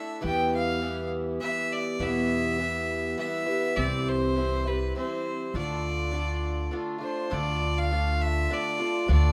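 A clear, earthy bowed fiddle with light vibrato carries a wistful, reflective melody over the shimmering, octave-doubled picks of a twelve-string archtop acoustic guitar, finger squeaks and all, with a woody, thumpy pizzicato upright bass on gut strings joining at 0.2 seconds in this 102 BPM acoustic folk piece in 3/4 and D dorian, moving through Em, C and Dm in a moderate studio room before shifting into a new section at 7.3 seconds.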